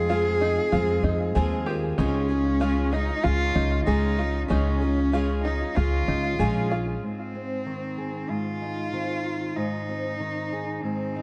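This echo-heavy recording carries light reverb and a top end that stops at 10.5 kHz. It is a short cut from a longer folk piece at 95 BPM in a straight 4/4, set in Ab major, with an anthemic, uplifting mood. A rich, smooth bowed cello carries the melody up front through the whole passage, its even vibrato trailed by analog delay. For the first 7.0 seconds, over Fm and then Db, it sits on a growly, woody pizzicato upright bass and a picked twelve-string acoustic guitar with shimmering octave doubling and audible finger squeak. Alongside them are a plunky, twangy open-back banjo playing arpeggios and a very quiet felt-muted upright piano, soft and intimate, with the guitar and banjo also sent through analog delay. At 7.0 seconds the harmony moves to Ab and those parts fall away, so the cello continues to the end at 11.2 seconds with a dark, fingerpicked steel-string acoustic guitar, also up front and touched with delay.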